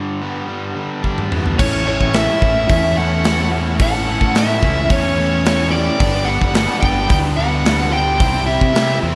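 A straight, steady 4/4 pulse drives this sunny, confident slice of classic rock, cut from a longer piece. Two bright rhythm guitars open the passage playing a riff over a G chord, one crunchy and overdriven, the other distorted and compressed, both set back in the mix with a slapback echo. A big, acoustic rock kit enters with a drum fill at 1.0 seconds, its punchy kick, medium-tuned snare and bright cymbals sitting up front. At 1.6 seconds the full band arrives on A: a round, fingered electric bass, a dark, smooth overdriven lead guitar carrying the melody up front, a very quiet octave-fuzz guitar tracing a second line beneath it, and a very quiet tonewheel organ holding piping, scooped chords with key click, chorus vibrato and a slow rotary speaker. The chords later move to G and then C, all bathed in a lush hall reverb that gives the band a big arena sound.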